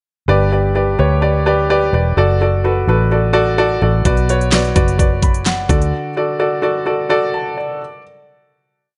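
An intimate grand piano with audible action noise plays close-voiced eighth-note chords and short fills over a dark, foam-muted, round electric bass from 0.3 seconds in this warm, anthemic piano-driven pop piece in D major at 128 BPM, moving through G, D/F#, Bm and D in light reverb, while a layered electronic drum kit with a knocking kick, fat snare doubled by handclaps and crisp hi-hats drives a pop backbeat from 4.1 seconds until it drops out alongside the bass at 5.9 seconds.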